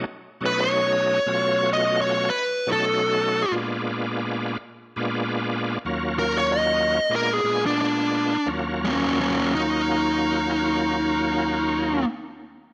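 A moderate echo-chamber reverb gives this mournful, smoky minor-key blues fragment a roomy glow, as a bright, shouting tonewheel organ with audible key click, light overdrive, chorus vibrato and a slow rotary speaker sets down the accompaniment from the start. At 0.5 seconds a smooth, dark, overdriven electric lead guitar enters up front to carry the picked melody over a straight 4/4 pulse between 85 and 106 BPM. The tempo slows between 3.5 and 8.5 seconds, as the chords move from B7 through Bb7b9 to Ebm7.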